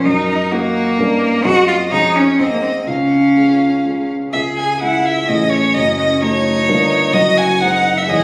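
A quick, cheerful classical-period movement for piano trio in 3/4 at 128 BPM, this spirited passage cut from a longer piece opens in Db major before turning to C# minor at 4.3 s. A rich, expressive violin carries the melody with vibrato and portamento, while a clear, focused cello plays a second line with its own vibrato, both bowed by single players and sitting up front over a dark, mellow concert grand piano accompaniment with deep bass. The sound is that of a phone recording in a recital hall, with a wet reverb of 1.4 seconds and compression.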